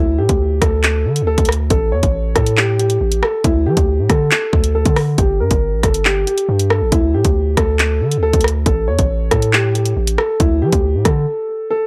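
A dark, boxy grand piano and a deep, sine-toned 808-style bass open this menacing drill excerpt together, with the piano carrying the melody between E4 and C#5 through a tape echo and a long sustain. The drum kit enters at 0.3 seconds: an electronic, hard-clipped kick, warm hi-hats, handclaps and rim clicks, set in a half-time feel at 138 BPM in 4/4. The bass has a fast attack and long decay, ranging from G1 to F3, and sits up front alongside the drums and piano. The ominous harmony cycles through D5, A and Gmadd9 chords, and a short break arrives at 11.3 seconds as the bass and drums drop out, leaving the piano to ring on briefly. The overall sound is dry and gritty, with little reverb and a hardware edge that heightens the sense of threat.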